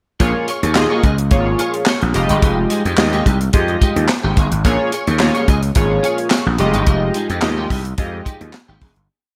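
A funky, slick early-eighties boogie funk piece opens at once with a tight, dry drum kit whose snare is layered with handclaps under gated reverb, a growly overdriven slap bass playing a fat syncopated line, glossy chorused polysynth chord stabs with grace notes over Bbm7 and Fm9, and choppy sixteenth-note clean electric guitar with ensemble chorus tucked lower in the mix, all in a lightly reverberant studio sound that fades out from 6.9 seconds.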